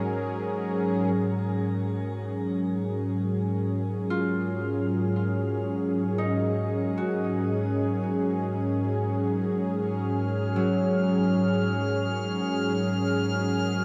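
A huge, wet reverb with a seven-second tail surrounds this spacious, serene ambient excerpt in free time, where a smooth, detuned sawtooth analog pad sits up front with chorus and shimmer reverb holding sustained chords that move from F#add9/G# to F#maj9/G#, a ringing, fingerpicked Celtic harp plays arpeggios through delay, and at 10.0 seconds a glassy glass-harmonics texture enters high above, its slow-attack sine tone carrying drifting overtones and a long release.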